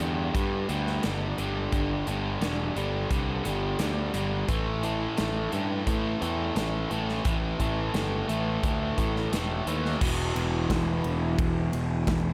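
A biting, double-tracked overdriven guitar sits up front, carrying a picked riff in its low register across this brooding, swaggering classic rock excerpt. Beneath it, a fuzz-laden picked electric bass growls just as far forward, its overdriven tone bright and gritty. A big acoustic rock kit fills out the sound with a punchy kick, a medium-tuned snare, hi-hat, ride, and bright crash cymbals ringing in a large room. The groove moves at a steady 87 BPM in straight 4/4, with the harmony shifting from G5 to A5 at 4.5 seconds before landing on E5 when a new section arrives at 10.0 seconds. Light reverb lends the mix a touch of space, and the passage is cut from a longer piece.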